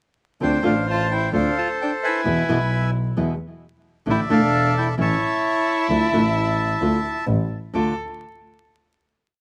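A reedy, boxy bandoneon carries this short, passionate and sultry tango, stating a motif-based melody in sentence-like phrases from 0.4 seconds. Beneath it, a single bowed violin sings a harmony line mostly in thirds, expressive and soft in attack, with vibrato and portamento sliding between notes. A fingerpicked nylon-string guitar with a deep classical tone supplies the accompaniment in short tango chords, while a bowed double bass, rich, nasal and focused, sits up front and drives the syncopated sincopa rhythm. The rubato feel lets the ensemble stretch and pull the time as the harmony moves through a brief minor progression, pausing just before the closing chord at 7.7 seconds. The recording is dry and outdoor, with little reverb, and a layer of vinyl crackle lends it a worn, intimate character.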